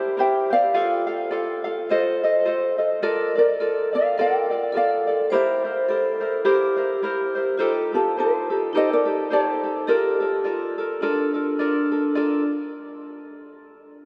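A thumb-plucked, up-front ukulele melody opens this languid, relaxed Hawaiian excerpt in Bb major at 105 BPM with a lilting swing, joined from the start by a light fingerpicked ukulele accompaniment and a ringing, metallic vibraphone second line played with medium mallets and the motor off in a boxy small-room tone, all bathed in a wet cathedral reverb over chords moving from C7 through Bbmaj7 until the melody drops out at 11.6 seconds.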